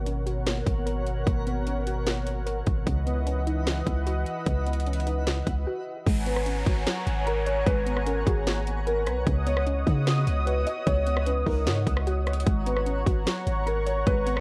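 Hazy and spacious, this atmospheric cloud-rap excerpt moves at 150 BPM in a half-time 4/4 feel, centered in G# minor and drifting between G#m11 and C#m11 chords. A smooth, detuned sawtooth pad holds sustained chords with chorus and sidechain pumping, while a soft, round pluck plays filtered, delayed arpeggios in the background. Underneath, a deep, sine-like 808-style bass sustains up front beside an electronic trap kit with a hard-clipped kick, sharp snare, metallic hi-hats, rim clicks and crash cymbals, and a twinkling granular texture adds an octave-up shimmer with its own reverb. After a brief break from 5.7 to 6.1 seconds, a downlifter sweeps through, and a felt-muted upright piano enters at 6.3 seconds with an intimate, dark, vintage melody softened by a low-pass filter and digital delay. The whole recording sits in a dry space, colored by worn, warbling cassette tape with a warbly pitch drift.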